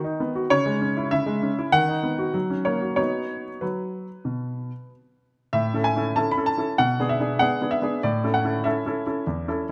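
Elegant and graceful, this short cut from a classical-period piano sonatina moves at 96 BPM in a straight 4/4, opening in B major and shifting to A major at 5.5 seconds. A clear, natural baby grand piano plays alone from start to finish, its short-sustaining notes ranging from E2 to B5 and sitting up front. Close, detailed microphones capture the instrument within a moderate recital hall reverb, and the harmony travels from C#m through F# to B before settling on A in the second section.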